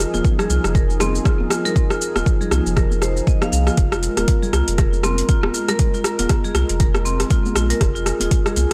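This afro house groove runs at 119 BPM in 4/4 with a 58% swing on the sixteenths, cut from a longer piece. It rests on a single Fm7 chord in F minor, and its mood is earthy and spiritual. A deep, overdriven electronic kick sits up front from 0.2 s, while a deep house kit adds metallic hi-hats, rim click and shaker with its own overdrive, and vintage, band-limited congas stay in the background. A round sine sub bass with a fast attack holds sustained low notes beneath a smooth, detuned sawtooth pad that plays long, mellow chords with chorus and a slow attack. A marimba struck with hard mallets spins percussive arpeggios through a boxy small room and tape echo, and the pad, bass and marimba each pump with sidechain. The recording is dry and gritty, with transformer saturation colouring the hardware sound.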